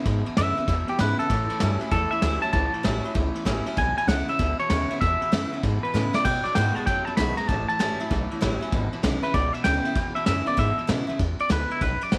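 A twangy electric guitar carries the melody up front, bright and clean with tape echo, over a picked electric guitar riff through a small old amp that sounds slightly broken-up and bathed in spring reverb, in this upbeat, retro rockabilly excerpt at 194 BPM with a swung feel in E mixolydian. A woody, thumpy upright bass on gut strings and a vintage brush drum kit with dark cymbals and a rolled-off top drive the E7, A7 and B7 changes, with a drum fill at 5.9 seconds. A full-bodied, picked steel-string acoustic guitar plays along underneath in a small room ambience, and the riff guitar drops out at 11.2 seconds.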